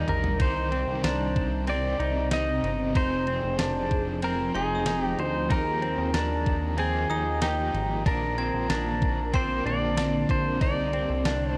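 Floating and dreamy, this dream pop passage, cut from a longer piece, moves at 94 BPM in a straight 4/4, with chords turning from Cmadd9 through Fm7, Ebadd9 and Bbadd9 before settling back on Cmadd9. A twangy, clean pedal steel guitar carries the melody up front, played with fingerpicks and slide, its volume swells trailing into delay. Beneath it, a bright semi-hollow electric guitar picks compressed arpeggios through analog chorus and delay, while a cranked stack guitar sits in the background, overdriven and wrapped in tremolo and lush chorus. A shimmering, ethereal pad holds sustained chords with an octave-up shimmer, slow attack and a dark, evolving granular quality, alongside a glossy, nasal chorused synth bass with a fast filter pluck. A clean 12-bit drum machine opens with a short fill, then drives the groove with a thumpy kick, fat snare, ride, tambourine and toms, and a smooth, bell-like glockenspiel with brass mallets rings faintly from 1.0 to 10.9 seconds. 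The whole mix carries light digital ambience and the warbly pitch drift of a worn cassette tape.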